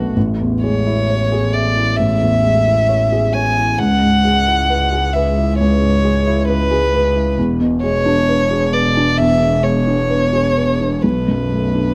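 The recording is close and detailed, with a light reverb around a small neoclassical ensemble of piano and strings. A dark violin carries the melody up front, played sul tasto by a single bowed player, its soft attack, light vibrato and smooth top giving the line an intimate quality. Beneath it a felt-muted upright piano supplies a mellow, soft accompaniment, while a rich bowed double bass sits more distant, even and steady with its own vibrato. The metre is 4/4 but the feel is rubato, and the harmony moves through Amaj7, C#m7, E7 and Bm7. All three parts sound together across the full 11.9 seconds of this excerpt from a longer piece, and the mood is reflective and full of longing.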